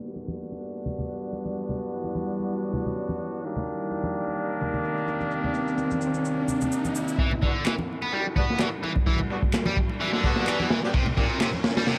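A crunchy breakbeat drum kit drives this swaggering, energetic breakbeat passage at 128 BPM in 4/4 with a light 16th-note swing. The kit, dark and saturated with tight kick, medium-tuned snare and dark cymbals, sits up front and arrives at 7.2 seconds, joined by a picked, double-tracked distorted guitar riff with overdrive and analog delay, and a very quiet, woody pizzicato upright bass. Before that, the opening section moves between Em9 and Cm9 chords. A deep, moody ambient pad sits in the background with chorus, reverb, sidechain pumping and a filter sweep. Punchy, bright horn stabs with light vibrato and analog delay ride over it. Overdriven electronic shaker and handclaps and close, hard-handed congas keep the groove busy, while a faint electronic riser builds from 5.6 seconds into the second section, where filter sweeps move across the drums and horns. The whole cut, taken from a longer piece, has a gritty, dry hardware character with vinyl crackle, a small room and a rolled-off top.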